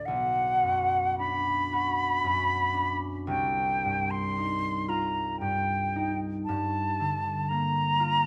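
An airy silver flute sings a tongued, vibrato-laden melody high in its register over a warm, fingerpicked concert harp whose low, ringing chords move from Bm to Cmadd9 to Gm9. This dreamy, pastoral impressionist duo drifts in a slow, rubato 3/4 at 51-60 BPM, the flute sitting slightly above the harp in level. Both are bathed in a stone room's reverb in this 8.3-second fragment of a longer piece.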